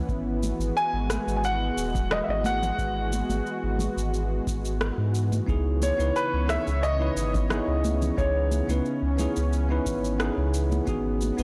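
A thick, detuned sawtooth pad with chorus opens this wistful sunset chillout excerpt in C# minor at 89 BPM, joined almost at once by a round, up-front sub bass, a dry, deep overdriven electronic kick, layered overdriven cabasa and rim click with a large-room sound, and close congas in the background, while a present grand piano with long sustain and tape echo carries the melody from 0.8 seconds over G#m7 and C#m9, a bell-like, clean tine electric piano with its own tape echo enters at 5.5 seconds, and the blown-out, overdriven recording sits in light reverb.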